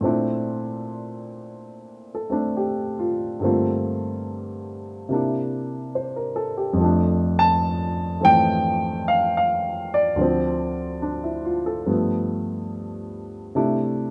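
Sophisticated and playful, this short excerpt of solo jazz unfolds at a relaxed 71 BPM in 4/4, with a swung eighth-note feel in C major. A single baby grand piano carries everything from 0.0 to 14.1 seconds, ranging from D2 up to A5 with a warm, natural tone that sits up front. The harmony moves through rich extended chords, opening on Bbmaj9#11 and passing through Gm11, C9 and F6 before Dm7 and G9 lead to a closing C69 at 13.6 seconds. A moderate studio reverb adds a gentle sense of room around the instrument. Cut from a longer piece, the passage feels like an elegant, lightly teasing turn of phrase rather than a complete statement.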